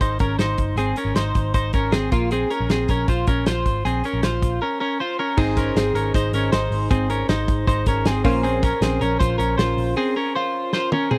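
A dry, close recording with barely any reverb gives this cut from a longer jangly indie pop piece a 1970s studio intimacy, and its mood is youthful and nostalgic. A clean, compressed twelve-string electric guitar sits up front, picking arpeggios throughout as the harmony moves between Ab and Bbmadd9. Beneath it, a vintage foam-muted electric bass adds a round, punchy low end until it drops out at 9.9 seconds. A loose acoustic kit in a small room, with dark cymbals, a medium-tuned snare and a tight kick, drives a straight 4/4 feel and closes on a drum fill at 10.7 seconds. From 5.4 seconds, chorused retro synth keys join as accompaniment, their glossy, detuned pulse-wave and sawtooth tones bright and evolving, with a filter sweep, a fast attack and a decaying tail.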